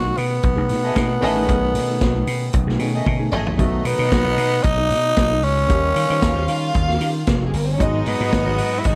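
Glamorous and danceable, this dry disco excerpt at 114 BPM puts a raspy, growling tenor saxophone melody up front over a punchy, amped slap bass and a vintage drum kit with a drum fill at 3.1 seconds, while a dark, clean electric guitar and an intimate grand piano sit in the background, a sul tasto violin section adds a second line from 0.8 seconds, and a bright, lush symphonic string section enters very quietly with sustained chords at 7.8 seconds as the harmony moves from B13 toward G#m7.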